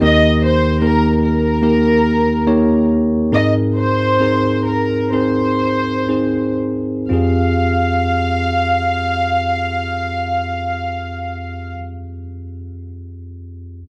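In a straight 4/4 that slows through the first 7.1 seconds, this emotional, longing pop excerpt pairs a bell-like, bright tine electric piano accompaniment with a dark, reedy violin section melody that has light vibrato and a gut-string, period-style tone; the violins stop at 11.7 seconds while the piano continues to 13.8 seconds over chords moving from Eb and Abadd9 to Fmadd9, all in a dry, close 1970s-style studio sound.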